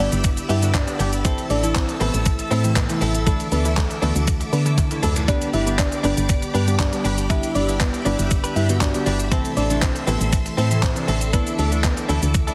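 Dance-pop with a summery, euphoric glow, this short cut from a longer piece moves in a straight 4/4 over a cycle of Em7/G, Am, Dsus2 and G. A punchy, round FM bass sits up front with the thumpy kick of a gated 80s digital drum machine, whose handclaps, hi-hat, shaker and toms ring with gated reverb from 0.1 seconds and break into a drum fill between 4.8 and 5.3 seconds. Glassy digital keys with chorus and sidechain pumping fill in the accompaniment from the background, while a vintage string machine holds lush sustained chords high above, also pumping under its ensemble chorus. A bright, clean electric guitar recorded direct plays a compressed, picked riff through lush chorus. On top, a soft, round pluck carries the melody with chorus and tape echo until 12.2 seconds, all within light reverb and a heavily compressed, radio-ready sound.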